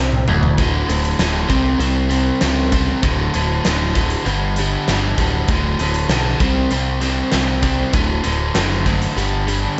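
A straight 4/4 pulse at 98 BPM drives this swaggering classic rock clip, cut from a longer piece, which opens with a drum fill over its first 0.6 seconds before the main section settles in. The big acoustic rock kit sits in a bright stone room, with a fat snare, a punchy kick, hi-hat and toms pushing everything forward. Up front, a biting, double-tracked overdriven electric guitar plays a picked riff from D2 to C4. Beneath it, a growling picked electric bass with its own overdrive, direct and amped and round in tone, holds down the low end from D1 to C#2. The harmony moves through D5, C5 and G5 power chords, returning to D between them, all under a light reverb with a slightly dark top end that keeps the mood driving.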